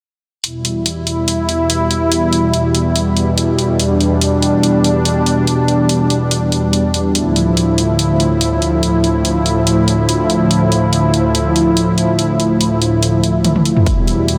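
Heavy and chaotic, this half-time wobble dubstep excerpt sets a lush, detuned supersaw pad up front, its soft-attack sawtooth chords pumping under sidechain and a low-pass filter as they move from Em to Dmadd9 at 7.2 s, over a layered, produced big-room dance kit of swung hi-hat and toms that rolls into a fill at 13.4 s before a punchy electronic kick lands at 13.9 s, all drenched in a huge, dreamy reverb.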